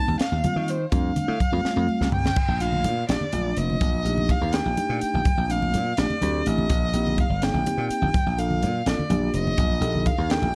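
This electric jazz fusion excerpt moves in a straight 6/8 at 83 BPM, with a bright, soaring mood. A dark, bowed solo violin carries the melody up front, its soft attack, vibrato and portamento giving the line an expressive, smooth top. Beneath it, a mellow, clean tine electric piano supplies the harmony, while a punchy, amped slap bass sits forward in the mix. A crisp, polished drum kit with dark cymbals, a high-tuned snare and a punchy kick plays in an airy room, and thick-skinned congas sit close and dry in the background. A drum fill from 1.6 to 2.4 seconds leads into a longer passage where the chords drift through colorful voicings such as Gm9/Bb, Ebmaj7#11/Bb, Bbmaj9 and Abmaj7, all within a warm, dark production with little reverb.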